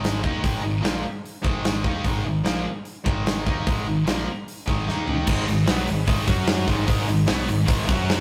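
Hard rock in G# minor at 149 BPM, this short cut from a longer piece feels heavy and driving in a straight 4/4. A huge arena drum kit sits up front with a punchy kick, medium-tuned snare, bright cymbals and toms ringing in a big room, while a growly, amped picked bass anchors the low end. Riffs come from a bright overdriven electric guitar treated with spring reverb and a high-gain distorted guitar set in the background, moving over G#5 and D#5 power chords. After a drum fill at 4.9 seconds, the second section arrives at 5.3 seconds, adding a double-tracked high-gain guitar in the background and a very quiet, clean tonewheel organ holding sustained chords through a slow rotary speaker as the harmony shifts between G# minor and F#5. The whole take has a rough rehearsal-room character, with tube saturation and a moderate stone room reverb.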